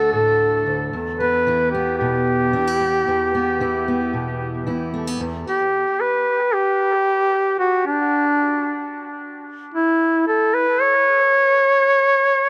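This folk piece, taken from a longer work, moves at 112 BPM in a straight 4/4 with a hopeful, nostalgic mood, tuned to A4 = 437 Hz. A duduk carries the melody between D4 and C#5, its warm tone shaped by vibrato and scooped notes, sitting up front with tape echo. A fingerpicked steel-string acoustic guitar with fresh strings and an auditorium-sized body sound accompanies it over D and Em chords, also close and treated with tape echo. The guitar stops at 5.4 seconds, and from 5.5 seconds the duduk plays solo with the harmony dropping out, continuing until 12.5 seconds. Light reverb and an echo-heavy mix give the short recording a hazy, remembered quality.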